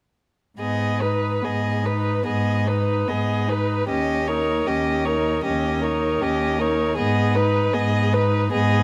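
Elegiac and melancholic, this brief excerpt from a slow romantic movement for string quartet in G# minor unfolds with rubato at about 71-80 BPM in 4/4. From 0.6 s, four muted, bowed players sound together: a close first violin sings the veiled, softly attacked melody with vibrato, a second violin traces a dark line with portamento, the viola adds light-vibrato accompaniment, and an up-front cello anchors the bass, all moving from G#m to D#7 and back under light reverb and detailed close miking.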